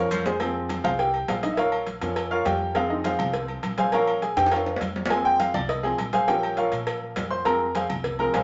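A short drum fill opens this driving, danceable salsa excerpt as a clear, up-front baby grand piano and a dark, woody, thumpy pizzicato upright bass begin, with the piano moving into a solo at 0.4 seconds over a back-and-forth of F minor and B-flat minor chords. Ringing metal-shell agogo bells and timbales, a round, low-tuned cowbell and hard-hand congas with a thick skin sitting in the background keep the groove going, broken by another drum fill at 4.4 seconds. A wet studio reverb fills out the sound, while the top end stays softened.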